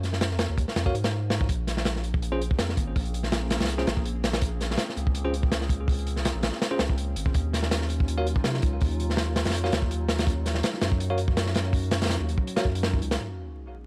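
Drum and bass with a jungle edge at 164 BPM in Bb minor, this raw, dark excerpt is driven by a crunchy, gritty breakbeat kit of hi-hat, tight kick and medium-tuned snare sitting up front over a deep, saturated sine sub bass, while a bright, bell-like tine electric piano drops dub-echoed stabs from 0.9 seconds and a warbling, detuned tape-like pad with chorus and phaser drifts in the background from 2.2 seconds through Bbm9 and Ebm9 harmony, all in a dry small room with vinyl crackle, before a sub drop lands at 13.2 seconds.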